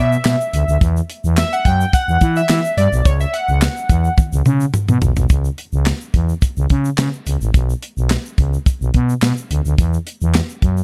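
A growling, thick FM bass sits up front through this late-night, funky early-eighties boogie funk excerpt, joined from 0.2 seconds by a tight, dry drum kit of kick, medium-tuned snare, hi-hat, toms and handclaps, with a grainy tube shaker tucked in the background. A glossy, nasal chorused polysynth carries the opening chords of Bm, Emadd9 and C#m7 with a filter sweep until 4.1 seconds, as a drum fill leads into a second section that drops the chords until an Esus2 arrives near the end. The small room and dark, warm production give the whole a mellow, late-night character.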